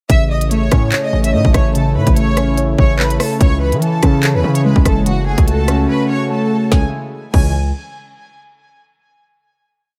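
At 0.1 s a lush, bowed violin section enters with a looping melody doubled in octaves, its vibrato smooth and close, carrying a light delay, alongside warbling lo-fi synth keys and a sustained analog pad. This is a dark, ominous drill track at 145 BPM in a half-time 4/4 feel, in C# minor, moving through A, C#m and F#m. The nostalgic keys, detuned and mellow with chorus, phaser and a filter sweep, play a rising and falling arpeggio in eighths that repeats like a sampled loop, while the slow-attack sawtooth pad holds sustained chords underneath. Up front, the electronic drum kit has a hard-clipped kick, a woody snare, rim clicks, handclaps, crash cymbal and crisp skipping hats, while a distorted, saturated 808-style bass follows the kick with long, heavy sub notes and pitch slides. The drums drop out at 5.9 s, leaving the strings, keys, pad and bass, then return at 6.7 s as the track lands on a closing C# minor chord. 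The sound is dry, with the beat pushed forward.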